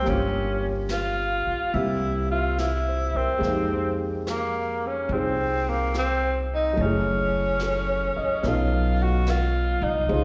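A breathy tenor saxophone opens this smoky, intimate jazz ballad in F minor at 72 BPM, sounding over grand piano and upright bass, with the brushed drum kit joining at 0.1 seconds. Up front, the sax carries the melody in a whispered, vintage subtone, with vibrato, soft attacks and scooped notes, wrapped in plate reverb and slapback echo. The piano accompanies with a warm tone under the same plate reverb and slapback, while the pizzicato upright bass sits close with a woody, dark, thumpy gut-string sound. The brushed snare and hi-hat stay in the background, natural and medium-tuned, with a swing on the eighth notes. The harmony moves from Gm7b5 and C5 into Fm11 at 3.4 seconds, then on to Gbm7 and B9. It sounds like a live club gig heard through the venue's PA, with a moderate room reverb, cut from a longer performance.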